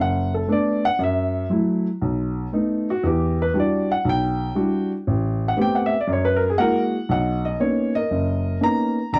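Playful and sophisticated, this brief solo jazz fragment, cut from a longer piece, swings at 118 BPM in 4/4 as a woody, up-front upright piano spans F#1 to A#5 through changes such as Bm7, Em9 and F#9 before arriving on Bmaj9 at 7.1 seconds, all set in a moderate club reverb with a dark, warm production.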